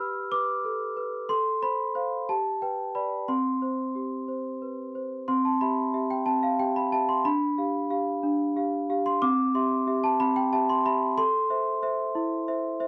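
A large celesta plays alone throughout this tender, dreamy classical lullaby in C major, its bell-like, delicate tone struck by hard felt hammers and ringing up front from C4 to F6. At a gentle 61 BPM in a straight 6/8, the opening phrase moves through G, F/A and G before a second pass from 5.3 s settles through C, G7/D and C toward A minor. The close, dry 1970s-style studio sound carries light reverb, and this brief 12.9-second excerpt is cut from a longer piece.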